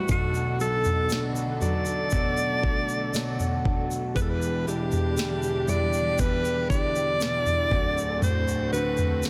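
Melancholic and heartbroken, this short excerpt from a slow pop ballad in E minor moves at 59 BPM in a straight 4/4, passing through Bm7, Em7 and D7. Up front, a breathy alto saxophone carries the melody with a close-miked, jazz-style subtone and vibrato. Beneath it, a felt-muted upright piano plays soft, intimate accompaniment, its thick felt and audible action noise giving it a hushed, mellow character. A picked acoustic archtop guitar adds woody arpeggios on old strings, trailed by tape echo, while a lush bowed string section sits in the background with sustained chords and a smooth top. A smooth R&B drum kit with an electronic, produced sound, a knocking kick and a sharp snare, along with a grainy, band-limited egg shaker, comes in at 0.1 seconds. Light reverb and studio ambience surround the parts, and the master is dense and heavily limited in a modern style.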